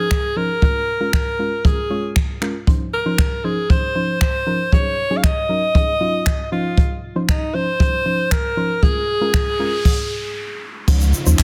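A bright alto saxophone sings a carefree, summery dance-pop melody with vibrato and tape echo, over a soft, round pluck with chorus and sidechain pumping, joined at once by an up-front brushed acoustic kit of boomy kick, high-tuned snare with soft clipping, hi-hat, shaker, finger snaps, handclaps and crash cymbal. A noise sweep and downlifter come in at 9.1 seconds, and the groove stops at 9.9 seconds. At 10.9 seconds a deep, saturated sub bass lands, followed moments later by an ethereal, airy background pad with ensemble chorus, all within a dense, heavily limited modern master.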